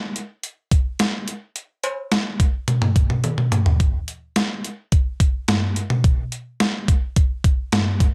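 A clean 12-bit digital drum machine carries this short pop fragment, its sampler-style electronic kit of kick, snare, hi-hat, toms and cowbell sitting up front from 0.2 seconds. The kick is thumpy and the snare medium-tuned, and the whole kit is overdriven and re-recorded in a small room, with gated reverb adding a punchy, period tail. The groove runs in a straight 4/4 at 107 BPM, and the mood is wistful and nostalgic. A drum fill at 3.2 seconds leads into a second section at 3.8 seconds. A moderate studio reverb gives the cut from a longer piece a snug, lively space.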